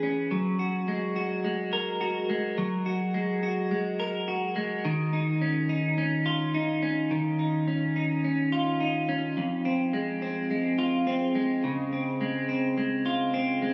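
A straight 4/4 pulse at 106 BPM carries this floating, ethereal dream-pop passage, cut from a longer piece and tuned to A4 = 441 Hz. A lone clean electric guitar plays solo throughout its 13.7 seconds, picked and sitting up front, with a bright, twangy, compressed tone ranging from F2 to B4. Lush chorus and tape echo color the guitar, and a huge ambient reverb with a 5.0-second tail wraps the sound in a hazy, spacious glow. The harmony moves from Gbadd9 to Ebsus2 at 4.8 seconds, then to Fm and Dbmaj7, giving the short section a suspended, dreamy drift. Captured on a phone in the room, the recording keeps a sense of studio ambience around the instrument.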